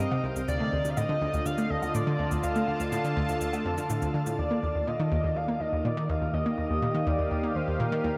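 A straight 4/4 pulse at 123 BPM drives this expansive, cosmic slice of sequencer-driven space music in Eb lydian, with a round, detuned analog pluck riff in the low register and electronic woodblock and cabasa sitting back in the mix with tape echo until 4.4 s. Above, a sweeping resonant pad holds airy, evolving chords from Dm to Ebmaj7 at 4.4 s, while a shimmering, warbling pulse-width lead carries the melody with vibrato; the pad, pluck and lead all carry chorus, and the lead and pluck also trail tape echo. The dark production is soaked in a wet shimmer reverb with an 8.0 s decay.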